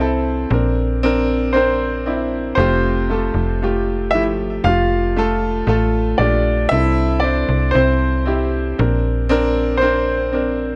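A bright, woody upright piano carries the accompaniment up front in this hopeful, emotional pop ballad in F major at a slow 58 BPM, while a warm concert grand piano with delay sings the melody and a snappy, metallic slap-like FM bass anchors the low end, all in light studio reverb over chords moving from Bbadd9 through Fadd9 and C6 in this short cut from a longer piece.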